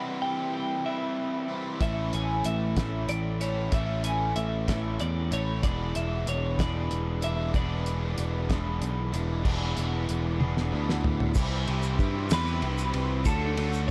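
Indie rock in 6/8 at 63 BPM, jangly and upbeat, cut from a longer piece: a twangy, compressed twelve-string electric guitar carries the melody with slapback echo over two overdriven garage guitars playing riffs, one of them thickened by analog chorus. The harmony opens on C, and at 1.8 seconds a growly, punchy picked bass and a cloth-damped, thuddy drum kit with a fat snare and dark cymbals arrive up front as it moves through A and E7, before a drum fill at 10.4 seconds leads into a Cmaj7 passage. A grainy, vintage tube shaker joins in the background at 11.3 seconds, and the whole sits in a small room with a dark, warm production.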